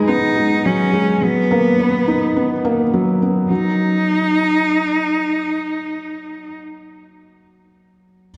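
Cinematic, hypnotic electronica at 105 BPM, cut from a longer piece, opens on a drop over G#m7 and Bmaj7 before the harmony falls away at 3.5 seconds. A felt-muted upright piano plays an intimate, mellow riff up front, its thick felt and audible action noise clearly heard until 8.3 seconds. A single bowed cello carries an expressive melody with vibrato, portamento and a soft attack until 6.5 seconds, all set in a dark production with a wet concert hall reverb.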